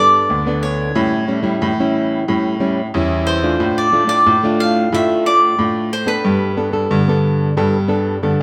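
Samba and choro in a lively, sunny mood at 91 BPM, this short cut from a longer piece features a crisp, picked cavaquinho carrying the up-front melody over a warm, fingerpicked classical nylon-string guitar. A brilliant concert grand piano supplies deep bass, and the harmony moves from Gadd9 through A7 and Dm/A before returning to Gadd9. The band plays live together in one room, with a moderate large-studio reverb lending the sound space.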